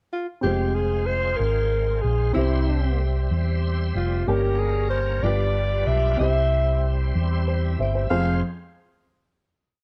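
Slow gospel in 6/8 at 63 BPM and F harmonic minor, this short, fervent, soulful piece opens with an up-front alto saxophone pickup at 0.1 seconds, its smooth, subtoned, vibrato-laden jazz melody built on hook-like motifs. From 0.4 seconds a round, punchy hollow-body electric bass carries the low line while a woody upright piano holds close-voiced chords with short fills, and a bright, shouting tonewheel organ adds lightly overdriven drop-2 chords with key click, chorus vibrato, fast rotary speaker, grace notes and fills. The harmony moves from Fm through C, Gdim and G7 back to C before settling on a final Fm chord at 8.1 seconds, all in a dark, dry production.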